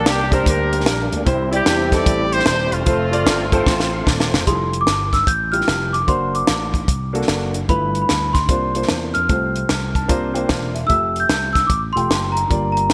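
A growly, punchy slap bass through an envelope filter drives this uplifting, hopeful slice of swung uptempo gospel, with a tight funk drum kit up front, its high-tuned snare and gated reverb cutting through. A mellow, jazz-style horn section with light vibrato and delay carries the opening melody over a dark, short-sustained concert grand and a fat, lightly overdriven tonewheel organ with key click and slow rotary in the background. At 4.5 seconds a bell-like, delicate celesta with delay takes over the tune and the organ drops away, while the piano adds a fill near 9.7 seconds inside a bright 1980s-style digital production with a touch of reverb and small room ambience.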